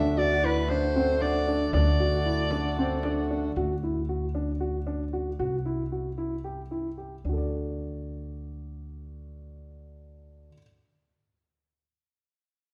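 Heard from further back in a wet recital hall with a 1.4-second reverb, this shimmering, playful contemporary chamber excerpt in 7/8 at 228 BPM (eighths) and D mixolydian opens with a breathy, whispered soprano saxophone melody with light vibrato over reedy, vintage pedal harmonium chords, joined at 0.4 s by a very quiet, deep frame drum. All three fall away by 3.5 s, leaving a dark, mellow baby grand piano with audible action noise playing arpeggios above a woody, growly pizzicato upright bass as the harmony moves from D to C at 5.4 s and returns to D at 7.2 s.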